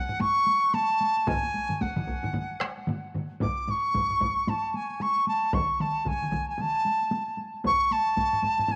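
A reedy, buzzing bamboo dizi with vibrato and tape echo carries the melody up front over a driving, ceremonial Japanese taiko ensemble, where a compressed, saturated solo drum struck with heavy sticks joins small-room ensemble drums and a vintage, band-limited hard-stick group entering at 1.3 seconds, all pushing forward as this brief swung excerpt speeds up under a moderate plate reverb.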